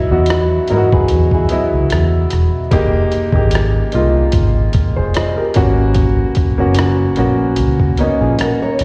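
A clear, intimate grand piano opens this sultry, soulful neo-soul and R&B passage at 74 BPM, its slapback echo and audible action noise framing rootless Dbm11, then Fm11 and Abm11 harmonies. A round, foam-muted vintage electric bass and a compressed, pitched-down, lo-fi sampler-style kit with a thumpy kick, hi-hat and rim click sit up front in a gently swung 16th-note groove. A dark, fingerpicked nylon-string guitar adds a softer second line from 0.7 to 2.5 seconds and again at 8.2 seconds, all heard like a live gig through a venue's PA with recital-hall reverb.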